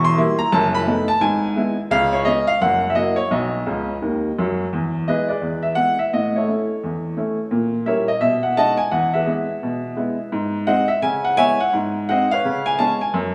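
Swinging and playful, this brief stride-piano jazz excerpt at 171 BPM in E major features a solo upright piano, clear and woody and up front, ranging from E1 to C#6 with a swung eighth-note feel, a short fill at 3.7 s leading into the second section at 4.7 s, all set in the wet reverb of a recital hall.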